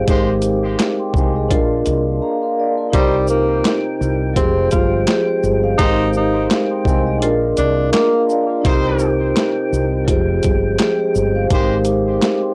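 Boom-bap hip-hop with a moody, reflective air and a swung groove, built on gritty, pitched-down sampler drums with a thumpy kick and high-tuned snare, a growly fretless bass, and an up-front vibraphone ringing with soft mallets over a lightly overdriven tonewheel organ turning through a slow rotary speaker. After a break at 2.2 s, a breathy tenor saxophone plays a jazz-style solo with scooped notes from 2.9 to 8.2 s, while a distant trumpet section adds stabs touched by analog delay. The dry, hardware-recorded sound carries only light reverb over a cycle of Abmaj7, Bb, Cm and Fmadd9 in this excerpt from a longer piece.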